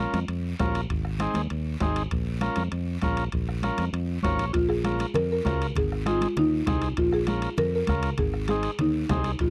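Cumbia in Bb minor at 198 BPM in a straight 4/4, passionate and danceable, cut from a longer piece and captured as a dry, close recording in a 1970s studio style. A vintage, buzzy combo organ sits up front with the accompaniment from the start, alongside a warm, direct fingered electric bass, while the chords move between Bbm and Ab. Congas with a bright, thin-skinned, damped sound and hard hands stay in the background. Ringing metal-shell timbales and a raspy guiro that sounds distant, as if in a large room, fill out the percussion. A soft-beatered bombo joins at 0.6 seconds. After a short organ fill at 4.1 seconds, a woody, buzzing marimba played with medium mallets takes the melody at 4.5 seconds, its hardwood bars heard in a boxy small room.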